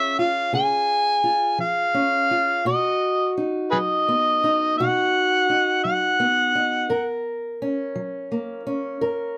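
In a straight 12/8 feel, this soulful, swaggering acoustic country blues fragment puts a gritty, overdriven, amplified harmonica up front with jazz-inflected scooped notes, tongue slaps and light vibrato until 7.2 seconds, over a dark, woody, boxy parlour steel-string guitar fingerpicked on old strings that carries on to 9.4 seconds, all caught by close, detailed microphones in light reverb.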